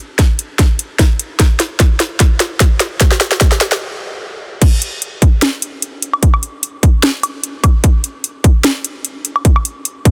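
A hard-clipped electronic kick drum sits up front in this euphoric, bright future bass passage, paired with a trap kit of sharp snare, metallic hi-hats, crash cymbal and woodblock, all riding a swung, half-time feel. A build-up carries a drum fill until 3.8 seconds, then a brief stop gives way to the drop at 4.6 seconds. The sound is dry, dense and heavily limited, and the clip is cut from a longer piece.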